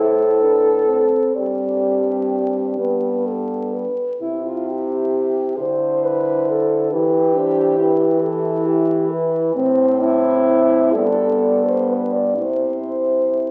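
Heard through the crackle of a very old 78 rpm record and the wet reverb of a recital hall, this brief, serene excerpt of a classical horn quartet unfolds in a lyrical, rubato 6/8. A dark, smooth-topped French horn carries the melody, while a mellow second horn with light vibrato and a soft attack sits up front; a third horn fills in the accompaniment and a warm horn anchors the bass. The harmony drifts from A minor through G and C to E minor before arriving back on C at 12.4 seconds.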